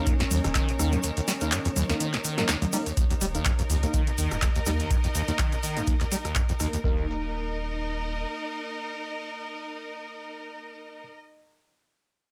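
Acid house with a raw, playful swing, built on a squelchy, resonant acid bass riff, an overdriven kick and a thick saturated sub bass pumping under a background of warbling lo-fi pad chords, worn electric piano stabs that get a filter sweep from 3.0 s, clear bowed strings, a punchy analog drum machine with metallic hats and handclaps, a very quiet gritty sampled breakbeat kit and a grainy egg shaker.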